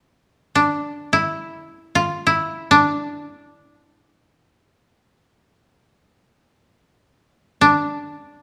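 Japanese traditional chamber music in free time, this still, meditative fragment from a longer piece features a solo koto in D hirajoshi. The koto enters at 0.6 seconds and stays within a narrow span from D4 to F4. Plucked with fingerpicks, its woody, up-front tone sits in a moderate recital-hall reverb.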